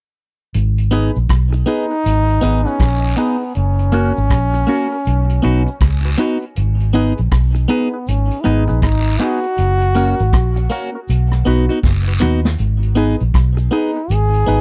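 Roots reggae at 80 BPM in G# minor, this hypnotic, meditative cut from a longer piece rides a swung sixteenth-note feel through a cycle of G#m, F# and B. A vintage drum kit with a punchy kick, medium-tuned snare, rim click, hi-hat and toms anchors the groove from 0.5 seconds alongside a quiet layer of cabasa and guiro. The dark, foam-muted fingered bass sits up front with a round, amped tone, while a clean, twangy electric guitar carries phaser and dub echo, and a hollow, percussive organ stab with chorus adds mellow punctuation. A bright trombone takes the solo melody from 1.7 seconds, its light vibrato and present tone trailed by dub echo. A drum fill at 11.8 seconds leads back to G#m, and the whole is captured as a dry, close 1970s-style studio recording.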